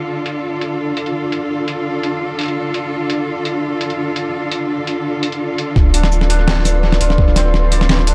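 Dark and cinematic, this half-time drum and bass excerpt at 169 BPM in D dorian opens on an up-front, bowed cello section holding sustained chords with vibrato and a pumping sidechain feel, joined at 0.3 seconds by a gritty, pitched-down boom bap drum kit whose filtered hi-hat, shaker and medium-tuned snare trail tape echo. The drop at 5.8 seconds brings in a thick, saturated sub bass on a low D and a thumpy, compressed electronic kick, while a hammered santur adds shimmering, ringing arpeggios through analog delay. From 6.0 seconds, a flickering, granular texture sits faintly in the background of a lightly reverberant, echo-heavy mix.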